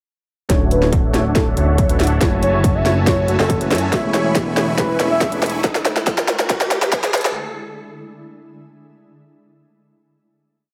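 Playful and bright, this short half-time future bass build sets a warm, velvety synth lead's repeating riff melody over huge detuned supersaw chords under a sweeping low-pass filter, a barky overdriven tine electric piano in the background, a fat evolving analog bass and a distorted layered kick with trap hat rolls and a sharp snare, all pumping together except the drums, while a shimmering granular pad enters at 1.9 seconds and a very quiet riser arrives at 4.1 seconds as the chords move from Dmaj7 through F#m7 to Amaj7/E.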